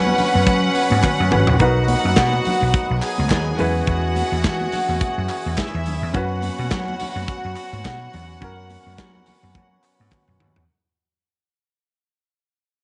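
Glamorous and danceable, this disco excerpt moves at 106 BPM in 4/4 with a light sixteenth-note swing, opening on F#sus4 and passing through Bmaj7 and E6 as a long fade-out begins at 1.6 seconds. An up-front, amped vintage slap bass plays alongside a modern studio drum kit with a tight kick and medium-tuned snare, which plays fills at 1.0 and 10.1 seconds. Bright, high-tuned congas sit distant in the background, and a very quiet, hollow group handclap joins at 1.0 seconds. A rich, close string section, bowed with soft attack and light vibrato, carries the second line, while a gritty, overdriven tonewheel organ with key click and lush chorus holds sustained chords. A clear grand piano with audible action noise plays accompaniment in the background, and the mix sits in light small-room reverb.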